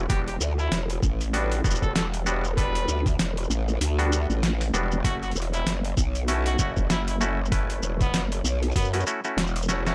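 Dry and close, with little room sound, this short cut from a longer glitch hop piece struts at 97 BPM in 4/4 with a swung sixteenth feel and a swaggering, funky mood in E dorian. A growling, wobbling bass sits up front, saturated and compressed with a formant-filtered edge and a chorus shimmer, holding the low end over Em7 and then F#m7 at 5.0 seconds. Gritty, pitched-down, sampler-style drums push hard through overdrive: a thumpy electronic kick alongside a boom bap kit of hi-hat, rim click, shaker and a medium-tuned snare placed forward in the mix. A twangy, stringy clav plays percussive stabs that pump against the beat, trailed by tape echo. A clear, forceful trumpet solos in a vintage jazz style with scooped notes and light vibrato, its phrases also carrying tape echo. A drum fill at 9.7 seconds closes the passage.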